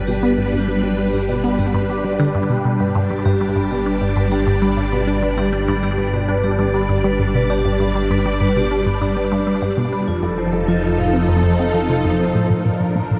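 A juicy, squelchy blip pluck stands out from its entry at 0.1 seconds, a detuned sawtooth riff with a resonant filter and a moving notch, coloured by chorus, phaser and tape echo. This is expansive, luminous ambient space music driven by a sequencer, moving at 99 BPM in a straight 4/4 in G major, and this short cut from a longer piece passes from G to F7 at 10.1 seconds and on to Bb at 12.5 seconds. A swirling, vintage string machine sits bright and up front with sustained sawtooth chords, warbling through ensemble chorus and phaser, while a metallic, ringing vibraphone played with medium mallets spins arpeggios through tape echo. Underneath, a fat, thick analog bass holds low, detuned sawtooth notes shaped by an evolving filter sweep. At 12.7 seconds a very quiet granular texture adds a twinkling, sparkling octave-up shimmer, and the whole mix sits in a vast, echoing space with a huge ambient reverb.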